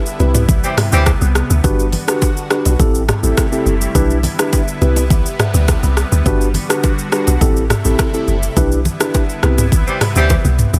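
Afrobeats at 104 BPM with a romantic, breezy mood, cut from a longer piece: a deep, round log drum bass sits up front beside an electronic afro-pop kit with a weighty kick, warm hats, rim click, shaker and toms. A mellow tine electric piano plays clean accompaniment over the lush, detuned pad, which sustains chords through chorus and phaser. Quiet, close bongos and congas add bright hand percussion, while a dark, distant horn section with light vibrato sounds briefly at 0.6 seconds and again at 9.9 seconds before a drum fill closes the passage in a dry room.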